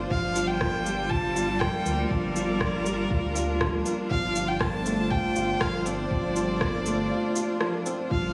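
Melancholic and intimate, this short cut of piano-and-strings electronica moves at 120 BPM in a straight 4/4, resting on Gm7 before shifting to Dm7/G at 4.1 seconds. A soft, felt-muted upright piano plays a mellow riff while a clear, bowed string quartet holds vibrato-rich sustained chords that pump against the beat, and a dark, woody solo violin carries the melody from 0.1 seconds. Underneath, a deep, detuned sawtooth bass rumbles with tube saturation and the same pumping, beside a muffled, pitched-down, tape-warm kick and an electronic shaker and rim click with a roomy, re-recorded sheen, all set in light small-room reverb.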